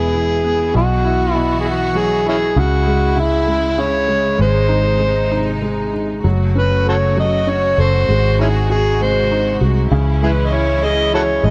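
Heartfelt and romantic, this six-eight pop ballad at 66 BPM sets a gritty, overdriven harmonica melody with delay, scooped notes and tongue slaps up front over a concert grand piano with audible action noise, lush bowed studio strings and a round, foam-muted electric bass, moving from E through C#m and G#7 in light reverb across this 11.5-second cut from a longer piece.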